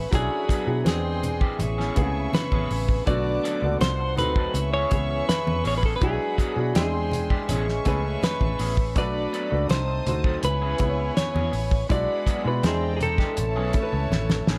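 A straight 4/4 groove at 82 BPM anchors this lush 1970s-style soul passage in A major, cut from a longer piece and carrying a warm, smooth mood. A cloth-damped, thuddy drum kit sits up front with a fat snare, tight kick and hi-hat, its top rolled off, while a vintage muted fingered electric bass adds a dark, round, foam-muted low end, and very quiet congas with a thin, low-tuned skin played with soft hands fill in the percussion from 0.9 seconds. A clean, compressed electric guitar carries the fingered melody, joined from 0.5 seconds by a second electric guitar through a small old amp playing a bright, twangy, slightly broken-up picked riff with harmonic tremolo. A clear, worn grand piano provides present accompaniment, a studio violin section floats above with a soft-attack sul tasto second line, and a trombone section with light vibrato punctuates from the background with pop-style stabs. 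The harmony cycles through E9/B, E7alt, Amaj9, Bm7, Cdim7 and C#m7, the whole set in a small room ambience, and a drum fill at 14.1 seconds closes the passage.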